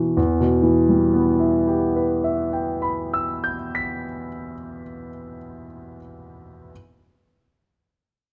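Close, detailed microphones place a concert grand piano up front in a moderate recital hall, whose 1.6-second reverb lends the sound a natural bloom. This is a brief fragment of an impressionist classical piece for solo piano, cut from a longer work and lasting about 6.7 seconds. Set in E minor and 6/8, it moves at a very slow 27 beats per minute with a free, rubato feel, settling on an E minor chord at 0.2 seconds. The piano's tone is warm and rich in deep bass, spanning from E2 up to B6. The mood is mysterious and wistful.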